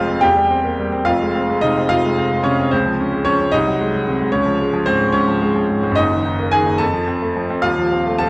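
A clear baby grand piano opens at once, close and intimate, with the soft clatter of its action audible beneath long, ringing sustain. This is a stormy, brooding romantic character piece for solo piano in 6/8, played with free, elastic rubato and cut from a longer work. The harmony moves restlessly through darkened colors, passing from C7 over E into F minor, through a lush Db major seventh, and settling on F before an F7 over Eb at 7.6 seconds leaves things unresolved. The piano spans from the deep low register up into the upper middle, its natural tone sitting up front within the wet reverb of a recital hall. Over it all lies the patina of worn old cassette tape, whose warbly pitch drift gives the performance a faded, unsteady quality.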